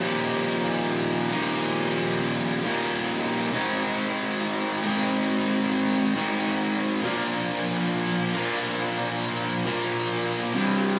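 A thick, fuzz-soaked electric guitar opens the recording at 0.0 seconds and carries it alone, sitting up front in a brooding, cathartic rock passage cut from a longer piece. At a slow 68 BPM in a straight 4/4, the picked, double-tracked part moves from Ebsus2 to Ab at 3.5 seconds and on to Bb at 7.0 seconds, spanning C2 to Bb4. Its distorted tone has a bright edge, giving the slow progression a sense of release. A wet studio reverb with a 0.5-second decay and the ambience of a small room, where the playing sounds live, frame the guitar. The instrument is tuned to A4 = 443 Hz, and the section it plays ends at 10.6 seconds, with the guitar sounding until 11.0 seconds.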